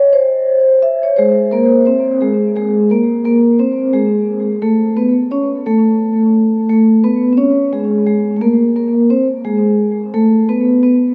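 A lone soft-mallet vibraphone, metallic and ringing with a slow motor vibrato, plays alone from 0.0 to 11.1 seconds in this nocturnal, mellow hip hop fragment at 87 BPM in 4/4 with a 64% swing on the 16ths, its vintage, band-limited tone sitting up front and trailed by dub echo in an echo-heavy mix with light studio reverb as it moves between Ab3 and E5 over Abadd9, Bbm7 and Asus2 harmonies.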